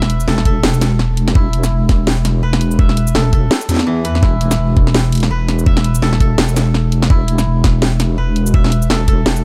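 A deep, wobbling square-and-sine bass with chorus sits up front, its fast attack and compressed sustain giving a dark weight to this spacious, cinematic excerpt of half-time drum and bass at 167 BPM, with a 16th-note swing over an E5 chord. A layered electronic kit with cracking snare, hi-hat and shaker runs throughout, while a knocking electronic kick enters at 0.5 s and drops out at 9.2 s. Beneath them, a softer woody koto, played with fingerpicks, traces arpeggios through tape echo in a dark, warm, nearly reverb-free mix.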